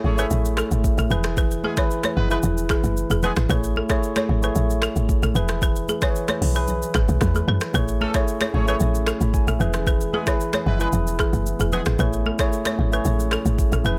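A straight 4/4 afrobeats groove, romantic and breezy, rides on a produced electronic kit with a deep kick, metallic hats, finger snaps, rim clicks and shaker, while a punchy, woody log drum bass sits up front and soft-handed congas tick in the background. A clean tine electric piano carries the Amaj7-to-E chords, adding a short fill at 6.9 seconds, as a dry, buzzing balafon riff struck with hard rubber mallets repeats through a delay. A tight, smooth-topped horn section with vibrato and octave doubling appears in two brief phrases, and from 8.7 seconds a very quiet, moody pad with chorus settles underneath in this cut from a longer piece.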